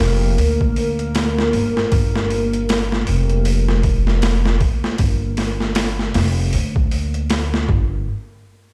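A gritty, sampler-style boom bap kit sits up front in this dark, melancholic trip hop excerpt, its pitched-down, compressed sound pushed further by overdrive, with a thumpy kick, a high-tuned snare and hi-hat that sound re-recorded in a large room. The groove moves at 78 BPM in 4/4 with a 59% swing on the sixteenths, giving it a slow, swung feel. Alongside it, an upright bass, also up front, plays pizzicato low notes with a woody, acoustic tone on steel strings. Behind them, a deep, moody analog pad built from detuned square, sawtooth and triangle waves with a sub octave and ring modulation holds a sustained Bb6/F chord through chorus, its slow attack and long release fading out by 7.7 seconds. The whole piece carries light reverb and sounds as if played on a big sound system in a bare stone room, a brief, brooding fragment cut from a longer piece.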